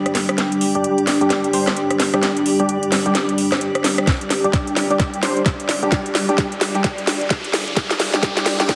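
A swung sixteenth-note bass house groove in 4/4 drives this gritty, bouncy build-up cut from a longer piece, where a moody detuned analog pad and a blurred, bright granular cloud pad pump under sidechain, a garage kit of cracking snare, rim click and metallic hats sits up front with a hollow, chorused organ stab joining at 0.8 seconds, a knocking electronic kick arriving at 4.1 seconds and a background riser from 5.6 seconds, all through a filter sweep and drum fill in a wet digital room with a heavily compressed, radio-like sound.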